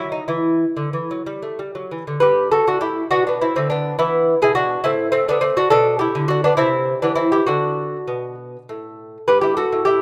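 A bright, delicate solo lute with gut double strings, some doubled at the octave, is fingerpicked up front in a radiant, flowing baroque-style dance in 6/8 with free rubato, its chords drifting through lush colours before settling on a final chord at 9.3 s, all set in a moderate recital-hall reverb in this short classical excerpt.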